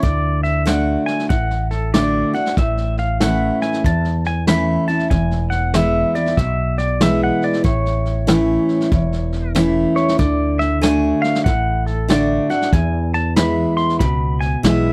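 A clean, compressed pedal steel guitar takes the solo across the whole 14.9-second fragment, played with fingerpicks and slide and shaped by volume swells as it sings between A4 and C6. This is sunny, down-home honky-tonk and classic country in A major, with a 94 BPM 4/4 feel and a 64% swing on the eighth notes. Behind the steel, a bright, full-bodied jumbo acoustic guitar is picked up front as the main accompaniment, while a dark, round fretless electric bass sits up front and direct in the low end. A vintage kit played with brushes keeps time on hi-hat, punchy kick and a medium-tuned snare, its small-room sound mid-forward with a rolled-off top. The harmony moves from D to A at 2.6 seconds, then through E, A, D and E, all captured in a dry, close 1970s-style studio sound with little reverb.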